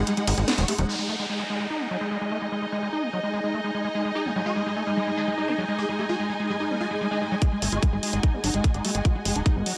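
The recording sits in a moderate digital room ambience with a tape-warm, up-front punch to its drums. It is a hypnotic, psychedelic trance passage in 4/4 at 147 BPM, cut from a longer piece. A bright, morphing wavetable pad with ensemble chorus holds sustained chords throughout, shadowed by a dark, lush symphonic string section, while a squelchy, gritty acid bass riff with delay runs under a long filter sweep; all three pump against a sidechain. After a brief opening break with a band accent, an electronic downlifter descends from 0.9 seconds. A swarming, aggressive rave lead with detuned unison, phaser, chorus and delay carries the melody again from 4.2 seconds. At 7.4 seconds the build-up begins: a tight kick drum enters and a layered garage kit with a cracking, low-passed snare and filtered cymbals returns. From 7.6 seconds a punchy, nasal sequencer bass comes back to drive the low end, and a filter sweeps across the lead.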